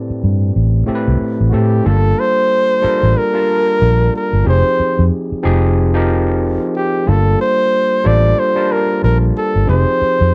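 R&B with a neo-soul lean, this short excerpt from a longer piece has a sultry, late-night mood and a lazy swing in its sixteenth-note feel. An overdriven tine electric piano opens the recording, its barky, gritty tone pushed through a combo amp as it carries the accompaniment over rich ninth chords, beginning on Am9 before settling into a Gm9 and Fm9 movement. A vintage muted fingered electric bass comes in almost at once, dark, round and punchy, sitting up front with a foam-muted thump. At 1.5 seconds a mellow flugelhorn takes the lead in a close-miked jazz style, its vibrato-laced solo line given a slapback echo. The sound is a dry, close 1970s-style studio recording with only light reverb, keeping all three parts immediate and intimate.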